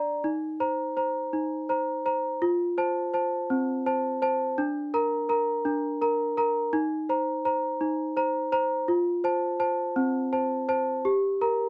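A bell-like, delicate celesta plays alone and up front from the first moment, carrying a dreamy, tender classical lullaby in a gentle, straight 6/8 pulse, with sweet tones through a light reverb and a dark production as its harmony cycles from Cm7/Eb through F and Bb/D before coming to rest on Gm at 11.0 seconds in this brief passage cut from a longer piece.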